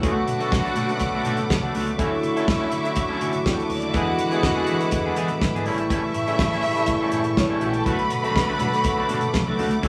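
A small-room, live-band sound with a wet studio reverb frames this sultry, driving disco cut in B minor at 122 BPM, where a dry, fat-snared 70s drum kit and a barky, lightly overdriven tine electric piano sit up front over a dark, round fingered bass and a twangy guitar at the edge of break-up, while a lush symphonic violin section carries a second line alongside biting, clear studio strings holding chords through Bm7, Dmaj9, E7 and A7, and very quiet ringing congas slip in at 7.9 seconds.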